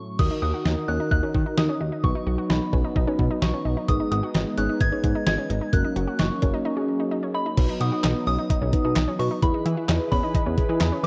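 A soft, pure synth bell melody and a brassy, detuned analog pad open this upbeat, nostalgic synth-pop excerpt in B major at 130 BPM, joined at 0.2 seconds by a mellow tine electric piano, a glossy chorused synth bass, and a thumpy, detuned 8-bit drum machine with handclaps and crash, while a round, nasal analog pluck adds chorused, delayed arpeggios from 0.3 seconds, all under light reverb, digital ambience and the warbly pitch drift of worn cassette tape, with a break at 6.7 seconds before the chords move from B to E.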